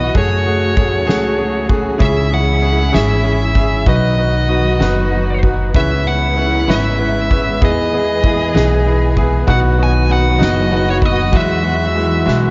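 This is a romantic, heartfelt pop ballad in 6/8 at 64 BPM, counted in dotted quarters and set in E major, cut from a longer piece. A dark, smooth electric lead guitar carries the melody with overdrive and tape echo, picked in a range from C#5 to G#5. Beneath it, a clear grand piano plays intimate, polished accompaniment with audible action noise, while a distant chamber string section holds sustained bowed chords with expressive vibrato in the background. A very quiet fingerpicked jumbo steel-string acoustic guitar adds woody, full-bodied arpeggios with the character of old strings, and an up-front pizzicato upright bass gives a thumpy low end. A soft-mallet drum kit, very quiet and set in a big room, uses a boomy kick, fat snare and ride cymbal, and closes with a fill at 12.3 seconds, as the chords move from F#madd9 through C#m, B and E to land on Eadd9 under light reverb.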